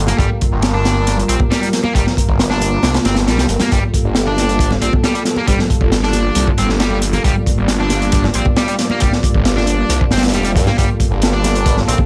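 A crunchy breakbeat drum kit with a punchy kick and high-tuned snare sits up front in this raw, funky 136 BPM breaks excerpt in G minor, joined by a swirling, phased detuned saw bass, a fuzzed, double-tracked guitar riff with tape echo, a deep, moody analog pad pumping on a held Gm9 chord, and very quiet, bright congas, all in light reverb across 12 seconds.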